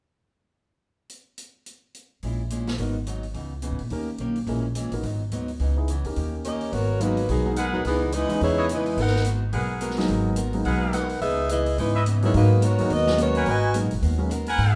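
A close-miked saxophone section carries the melody up front from 6.5 seconds in this dramatic, sultry stretch of big band swing in G# minor at 214 BPM, cut from a longer piece. The drum kit opens alone at 1.1 seconds with hi-hat and a natural, medium-tuned snare, sitting low in the mix. At 2.2 seconds a woody pizzicato upright bass, placed up front, arrives alongside a boxy picked archtop guitar with fresh strings and audible finger squeak. An intimate grand piano with audible action noise soon adds accompaniment over chords that circle A#m7b5, G#m7, C#m9 and D#7 before settling between G#m9 and C#m9. A bright trumpet section adds stabs with light vibrato and a soft attack, and a moderate recital-hall reverb lends the whole band a sense of space.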